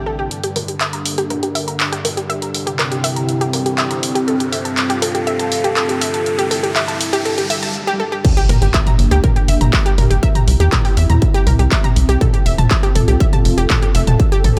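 Melancholic and cinematic, this melodic techno excerpt opens on a moody analog pad with chorus and phaser, a round, detuned analog pluck arpeggio with tape echo that is filter-swept through the build-up, and a tense, string-like bowed drone with vibrato that drops out at 7.8 s, all pumping against the sidechain. A techno drum kit with crash, handclaps, filtered hi-hats and toms, recorded in a large room and placed up front, drives the build while a riser, swell and impact sit in the background. At 8.2 s the drop lands with a distorted electronic kick, followed at 8.5 s by a punchy, saturated sequencer bass, all in a light digital ambience.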